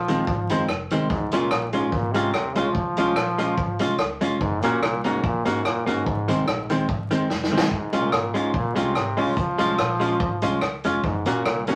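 A brilliant, punchy trombone carries the melody with vibrato over a woody, thumpy pizzicato upright bass in this cheerful, upbeat ska cut from a longer piece, moving at 145 BPM in Db major with a light swing. A dark, clean hollow-body electric guitar plays picked accompaniment up front, while a roomy big-band drum kit with a boomy kick, rim clicks and hi-hat adds vintage sampler grit and a fill at 7.3 seconds. The changes cycle through Ab, Db and Gb, and the whole mix sits in a wet studio reverb under a layer of vinyl crackle.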